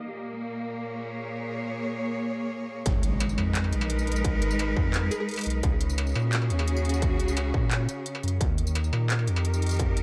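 A half-time 4/4 pulse at 173 BPM drives this tense, heavy drum and bass cut in G# dorian: a bright, lush cello section holds bowed chords with vibrato and sidechain pumping throughout, and the drop at 2.9 s brings in a deep, thick, saturated sub bass, a distorted, up-front electronic kick, a tape-warm industrial kit of handclaps, smooth hi-hat, struck metal and tambourine, and a background electronic impact, while a hollow, detuned square pluck with chorus and analog delay flickers briefly at 5.1 s, the whole dreamy, reverb-soaked, low-pass-filtered mix moving through A#m7, G#madd9, C#sus4 and D#.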